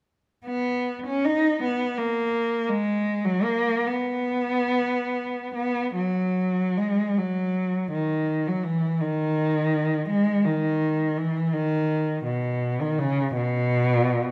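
A single bowed cello opens at 0.5 s, warm and up front, singing a serene, lyrical line in a free, expressive classical style, with rubato stretching the slow 6/8 pulse. Its tone carries vibrato and portamento, staying in a low-to-middle register, and a new section begins at 5.5 s before the passage breaks off at 14.3 s as part of a longer piece. Close, detailed microphones capture the instrument while a moderate scoring-stage reverb adds a gentle halo of space.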